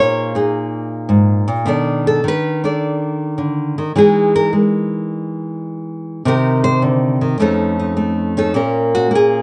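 Close, detailed microphones and a light reverb put a fingerpicked nylon-string guitar up front, its acoustic tone warm and classical in character, in this brief cut from a longer solo jazz piece. Playing alone at 105 BPM in 4/4 with a playful swing on the eighths and tuned to A4 = 436 Hz, the guitar spans F2 to D5 across a chord progression from Bb7sus4 through Emaj7 and F7b13, settling on Bbm at 8.5 seconds before the clip ends at 9.4 seconds.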